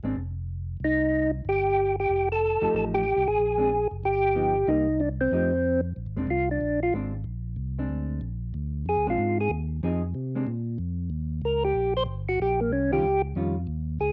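A brisk swing at 186 BPM in 4/4 drives this swinging, bluesy jazz clip in Bb mixolydian, cut from a longer piece, with a fat, clean tonewheel organ bass line turning through a slow rotary speaker from the start and taking a solo from 6.0 seconds. A mellow, round percussive tonewheel organ carries the melody from 0.8 seconds, its third-harmonic percussion and slow rotary placed up front. A dark, fingered hollow-body electric guitar adds accompaniment with a cassette-tape tint, all in a light reverb that frames the home cassette recording.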